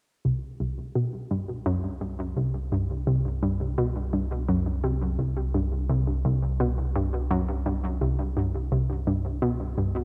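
A straight four-beat pulse drives this luminous, cosmic stretch of sequencer-driven space music, cut from a longer piece, where an up-front, nasal, wave-folded analog pluck repeats a low riff through chorus and tape echo over a deep, dark, sustained round analog bass, all set in a light reverb.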